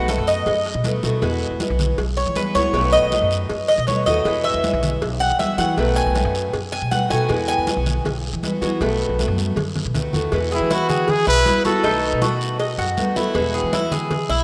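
A straight 4/4 groove at 158 BPM drives this relaxed, sunny Cuban son and guajira excerpt in E major, built from congas with a thick skin, a tight high-tuned cowbell, a raspy guiro, a woody pizzicato upright bass and a boxy picked archtop guitar, all alternating between B7 and Eadd9. A bright, metallic Cuban tres with double strings takes an up-front solo from the start and pauses at 8.0 seconds, before a drum fill runs from 9.2 to 10.3 seconds. The tres returns at 10.5 seconds, when a breathy, whispered trumpet with light vibrato briefly carries the melody. The rough home demo mix sits in a lush hall reverb.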